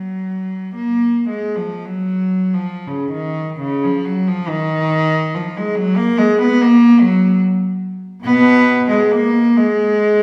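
This classical fragment, cut from a longer piece, is a lyrical, nostalgic passage for unaccompanied cello. A single bowed cello plays sul tasto with a soft attack, its tone warm, pure and floating, and it sits up front while still sounding a little distant. The music is in F# major, in a flexible 6/8 that moves freely at roughly 27 to 50 BPM in dotted quarters, with an expressive rubato throughout. The line stays within B2 to B3, and the opening phrase returns at 3.1 s, carrying through to the close at 10.2 s. A wet recital-hall reverb with a 1.7-second decay, captured in a church or concert hall setting, gives the instrument a gentle halo, and the tuning rests at A4 = 443 Hz.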